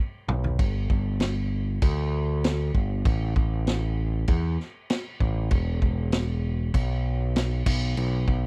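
A growling picked electric bass anchors this short classic rock excerpt, its overdriven, amped tone sitting up front and spanning E1 to E2. Beside it, a vintage acoustic drum kit enters at 0.3 seconds with a fill, bringing a punchy kick, a medium-tuned snare, toms and dark crash cymbals, all heard in a mid-forward, rolled-off sound. The mood is sunny and driving, set at 98 BPM in a straight 4/4. Both parts play together through to around 8.5 seconds, forming a single section. The recording is dry and close, with the warm character of a 1970s-style studio room.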